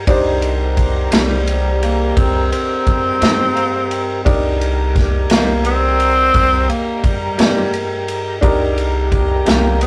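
Slow, soulful and smoky 12/8 blues, cut from a longer piece, in which a breathy, close-miked tenor saxophone enters up front at 1.1 seconds with a subtone and vibrato, over woody pizzicato upright bass, a vintage drum kit with dark cymbals and a punchy kick, smooth tonewheel organ chords swirling through chorus vibrato and a slow rotary speaker, a bright upright piano that adds a brilliant fill at 3.2 seconds, and a slightly broken-up electric guitar with tremolo in the background, all captured in a rough, tube-saturated rehearsal-room recording with a small room's reverb.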